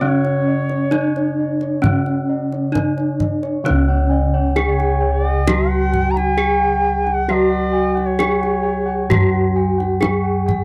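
This ceremonial, shimmering Javanese gamelan excerpt opens with a bright, up-front bronze metallophone melody over a boxy lower metallophone accompaniment, a dark, smooth bossed-gong bass and airy bossed-gong arpeggios touched by tape echo, while a distant, reedy bansuri carries a second line; a deep kendang joins at 0.2 seconds, and a further metallophone arpeggio enters in the background at 3.7 seconds, all within a dry, close 1970s-style studio sound.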